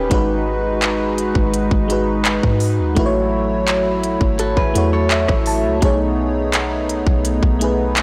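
A blown-out, overdriven recording wrapped in light reverb and digital ambience gives this sensual, moody slice of contemporary R&B a gritty haze. An electronic trap drum kit sits up front with a hard-clipped kick, crisp hi-hats, handclaps and rim clicks, while a soft 808-style bass adds deep, round, dark sine tones under the harmony. A lush, dreamy FM electric piano with a soft pad layer carries the accompaniment through a chorus effect, and a smooth, warbling analog pad of detuned sawtooth and wave-folded tones holds sustained chords, with chorus and sidechain pumping. A bright, clean, direct-recorded electric guitar picks compressed arpeggios through tape echo, returning at 4.4 seconds, and the electric piano adds a fill from 4.8 to 5.8 seconds. The harmony moves from G#m7 to F#m7 before landing on B13 as this excerpt from a longer piece runs out.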